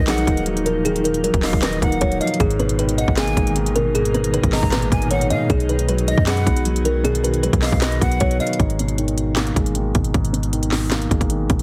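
A half-time trap beat at 155 BPM in 4/4 drives this melancholic, eerie hip hop excerpt in G# dorian, with a hard-clipped kick, sharp snare, crisp hi-hats and handclaps sitting up front over a deep, boomy 808-style bass. A dry, woody kalimba carries the melody while a breathy, bright jazz flute with a chiffy straight tone adds a second line, both touched with digital delay, as a dark, vintage grand piano accompanies and a very quiet, blurred granular cloud pad sustains chords beneath. At 8.6 seconds the kalimba, flute and pad drop away, leaving the piano, under a filter sweep, with the bass and drums, all pressed into a heavily compressed, radio-like sound with little reverb.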